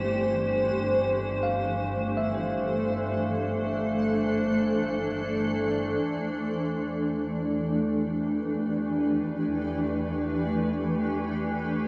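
A granular cloud pad sits up front in this luminous ambient excerpt, its blurred, evolving sustained chords shimmering through reverb over a rich, bowed double bass section with vibrato, while a clean tine electric piano fades in with arpeggios through a diffuse delay until 6.1 seconds, all suspended in a vast, echoing space as Gsus4 gives way to Em7.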